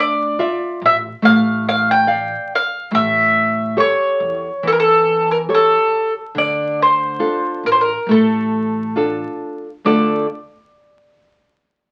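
A rubato 4/4 at about 70 BPM carries this mournful, longing fado-style ballad in D minor, cut from a longer piece and tuned slightly sharp to A4 = 443 Hz. Up front, a woody, double-strung mandolin picks the melody over a bright, fingerpicked nylon-string guitar, while a dark, thumpy pizzicato upright bass on gut strings sits very low in the mix. The chords move from Dmadd9 to A7 at 2.9 seconds and back to Dm at 6.4 seconds. The whole performance sounds as if heard in a wet club ambience through the crackle of a very old 78 rpm record.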